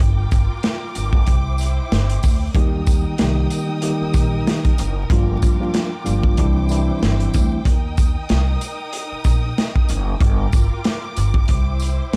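This dark, gritty boom-bap hip-hop excerpt is built on a crunchy breakbeat drum kit, its punchy kick, medium-tuned snare and hi-hat sounding saturated and rolled off at the top from a small room, placed up front. The groove moves at 94 BPM in 4/4 with a light 16th-note swing, and the first 2.5 seconds form a break. An upright bass, played pizzicato, sits close beside the drums with a woody, growly tone and steel-string bite in its low register. Behind them, a distant, lush string section holds bowed chords with expressive vibrato, while a jingly tambourine stays close and dry in the background. A mellow tine electric piano enters at 2.5 s and plays until 7.6 s, clean through its built-in speakers with a cassette-tape coloring, as the harmony cycles through Gm7, Cadd9 and Eb. Studio reverb and vinyl crackle give the recording a dusty, lived-in sheen.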